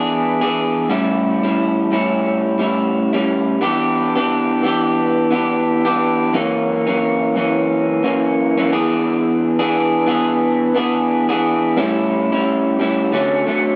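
Indie pop in a hazy, lonely mood at 88 BPM with a lilting 16th-note swing in E dorian, this short cut from a longer piece features a lone electric guitar played through a small old amp, picked, slightly broken-up, compressed and lo-fi up front, bathed in lush chorus and vibrato and a wet studio reverb, drifting through chords from E7 and A7 to Em7 and F#7 before settling on Dmaj7 at 13.1 seconds, all within a dark, warm production.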